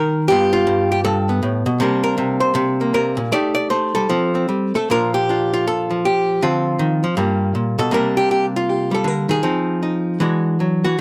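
A miked, amplified archtop guitar plays alone and up front in this relaxed solo jazz excerpt at 158 BPM in 4/4, its dark, clean, compressed hollow-body tone picked through a swung, rubato passage that moves from G minor into B-flat major at 4.9 seconds, with chords such as G7, Bbmaj7 and Gm9 captured by close, detailed microphones in a dry room.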